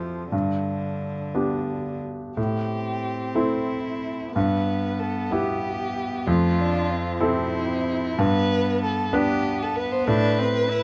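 A clear, up-front grand piano with short sustain opens this fragment of a melancholic, fragile neoclassical piece in A minor, joined from the start by a rich, floating cello played sul tasto as a soft second line, moving in a rubato 6/8 at around 57-65 BPM. At 2.4 seconds a dark, woody solo violin enters up front with vibrato and sul tasto bowing to carry the melody over a progression that moves from Am7 through Em/G, Fmaj7 and G before settling on Am. Moderate studio reverb surrounds the rough home-demo mix.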